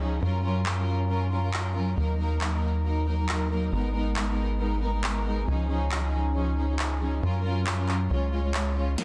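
A dense, heavily limited mix with light reverb frames this driving, soaring uplifting trance excerpt, where a dark, intimate string ensemble bowed sul tasto with light vibrato holds sustained chords through Gbmaj7, Ebm, Abmadd9 and Dbadd9 over a tight sawtooth-and-square sequencer bass with a saturated filter pluck, before a punchy analog drum machine of handclaps, hi-hat and a low-passed snare in a short small room joins at 0.7 seconds.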